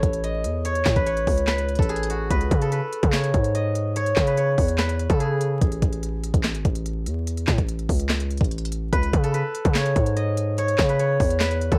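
Melancholic and menacing, this trap-leaning hip hop excerpt moves with a heavy half-time feel as the harmony alternates between A and C#m7. A steel-string zither carries the melody throughout, its fingerpicked tone silvery and ringing, softened by a low-pass filter, cassette tape color and plate reverb. Underneath, a distorted 808-style bass hits hard with a fast attack and decaying sine body, its aggressive grit layered with noise. The trap drum kit of knocking kick, sharp snare, crisp hi-hats and handclaps sits up front, overdriven, treated with cassette tape and re-recorded in a small room. A break arrives at 5.6 s and runs to 8.9 s, and the whole piece carries a lo-fi home-cassette character with vinyl crackle and light reverb.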